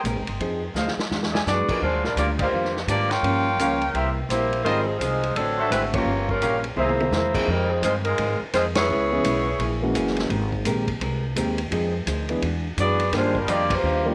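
A swung 4/4 at 170 BPM drives this sultry, dramatic big band jazz excerpt in F minor, where a mellow, up-front saxophone section carries the melody with light vibrato over woody pizzicato upright bass, a vintage drum kit with dark cymbals and a punchy kick, a grand piano of long sustain, and a clean, compressed hollow-body guitar in the background, while a distant trumpet section adds tape-echoed stabs from 0.8 to 6.9 seconds and again briefly near the end, band accents punctuate the groove, and light reverb lends a small-room ambience.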